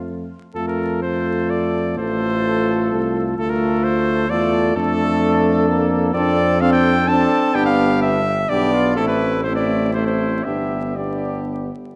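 A close-miked, up-front cornet carries the melody in this noble, stately classical brass quintet excerpt in F major, moving in a rubato 3/4 at around 116-132 BPM. Beneath it, a distant, roomy trumpet with light vibrato sings a second line, a mellow French horn sits in the background, and a closely recorded trombone, also touched with vibrato, fills out the accompaniment, while a warm, up-front tuba anchors the bass as the harmony moves from F through D minor to G7, A minor and G. The quintet rings in a wet concert-hall reverb over a bed of vinyl crackle, and the cornet stops at 11.5 seconds, just before the others.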